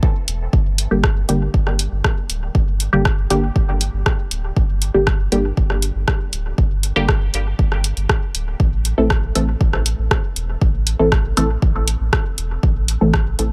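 Dub techno at 119 BPM with a meditative, deep mood, built on an up-front electronic kick with a tape-warm, deep thud from the start and a clean, dark pure sine sub bass that pumps against it. A deep house drum kit of hi-hat and rim click, layered and re-recorded in a small room, carries dub echo, while a muted, detuned chord stab of sawtooth and square waves enters at 0.9 seconds with phaser, cassette tape grit, sidechain pumping and dub echo. The stabs move from Gm to Am at 8.6 seconds within a digital ambience, in a short cut from a longer piece.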